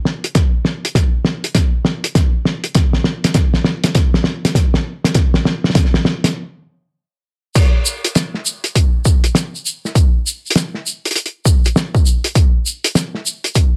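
A swung sixteenth-note groove in 4/4 drives this playful, gritty glitch hop cut, where a cloth-damped acoustic kit with a fat snare, dark cymbals and a rolled-off top builds through a drum fill alongside a punchy, layered electronic kick that was re-recorded in a large room. Both sit up front before everything stops at 6.4 seconds, and the drop lands at 7.6 seconds as a grainy, mellow tube shaker joins close and dry. A modest small-room reverb and a gritty hardware sound give this excerpt from a longer piece its rough edge.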